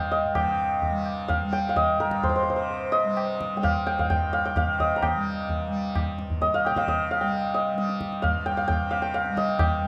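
In a straight 5/4 at 130 BPM that gradually speeds up, this introspective, longing Hindustani classical excerpt in G raga malkauns, tuned to A4 = 441 Hz, sets an up-front, hammered santur melody ringing and shimmering between Bb4 and Bb5 over a softly plucked, buzzing tanpura drone low in the mix, while a low-tuned tabla with a short ring enters at 0.4 s, all sitting in a moderate recital-hall reverb.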